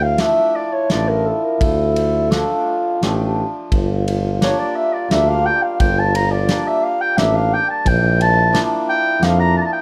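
A dark, distant clarinet carries the melody up front in a classical style, taking a solo across the whole 9.8-second excerpt from a longer klezmer piece in 3/4 that feels both festive and soulful. Beneath it, a raspy, gritty trombone with a soft attack plays a growling jazz-style second line with a vintage character. A close-miked tuba anchors the bass with vibrato and a rounded, gentle onset, sitting forward in the mix. From 0.2 seconds a mellow hammered dulcimer adds shimmering, ringing accompaniment, while a loose acoustic indie drum kit with a tight kick, medium-tuned snare and ride cymbal sits mid-forward. The harmony moves from Dm to Gm to Bb as the pace gradually speeds up throughout, all set in a wet small-room reverb.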